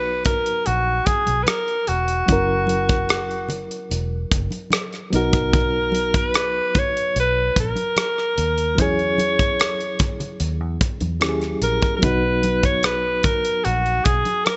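This is lush 1970s-style soul in B major, unhurried at 74 BPM in a straight 4/4, with a warm, romantic mood, cut from a longer piece. A raspy alto saxophone carries the melody up front, its gritty, vibrato-laden tone sounding slightly distant and roomy. Beneath it, a reedy electric piano comps through a worn, slightly out-of-tune voice, lightly overdriven and pulsing with a medium tremolo. A dark, round, foam-muted fingered electric bass anchors the low end until 14.2 seconds. A modern acoustic drum kit enters at 0.2 seconds with hi-hat, rim click and a punchy kick, and soft-handed, damped congas join at 0.3 seconds, sitting bright and dry in the background. The harmony moves gently from Bmaj7 through F#7 and E69 before settling back on Bmaj7, all within a small-room ambience, light reverb and a mellow top end.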